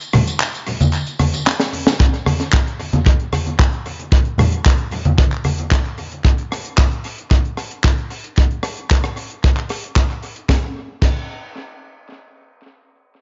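Sleek and cosmic, this nu-disco excerpt opens on a break from the tight funk kit, its high-tuned snare, hi-hat, handclaps, rim click and crash carrying a tape echo and rounding the break off with a drum fill, alongside bright, saturated tambourine and soft-handed congas up front until 5.6 seconds; a tight, mid-forward acoustic kick drops in at 2.0 seconds and drives the echo-heavy, dark-toned mix until 11.2 seconds.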